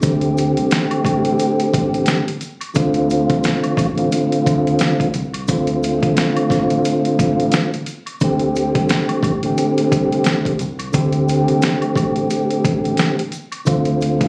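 A swung 88 BPM boom-bap groove in 4/4 drives this reflective, gritty hip-hop excerpt in D minor, built on a compressed, sampler-style drum kit with a thumpy kick and fat snare up front, while maracas and woodblock tick along in the background. A clean tonewheel organ with key click and slow rotary vibrato, colored by cassette tape, carries the Am7 and Dm7 chords throughout over a dark, round fingered electric bass. The piece sounds captured on a phone in a small room, with club reverb and vinyl crackle adding a dusty patina.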